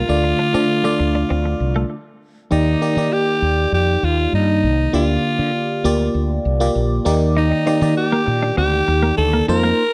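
Dry, close 1970s-style studio sound with digital ambience frames this romantic, nostalgic pop excerpt, where a raspy, punchy alto saxophone with slapback echo carries the melody up front over glassy, bell-like FM electric piano chords treated with chorus and phaser and a round, dark fretless bass, while a clean twelve-string electric guitar riff sits in the background until 1.8 seconds, the music halts in a brief stop at 1.9 seconds, and the guitar returns at 7.4 seconds.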